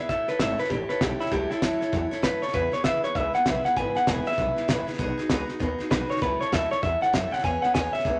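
An electric guitar played through a small old amp leads this short rockabilly excerpt, its picked solo sounding clean yet slightly broken-up, compressed and lo-fi, sitting up front across the full 8.2 seconds. The mood is retro and rowdy, driven at 196 BPM in 4/4 with a swung eighth-note feel in E major, moving through A6, E6, B6 and back. Beneath the lead, a picked steel-string acoustic guitar supplies accompaniment with a warm auditorium body. An upright bass played pizzicato on gut strings adds a woody, dark, thumpy low end. A cloth-damped drum kit of hi-hat, kick and snare sits up front with a fat snare, tight kick and rolled-off top, all in a small-room acoustic. Light reverb gives the performance a bit of space.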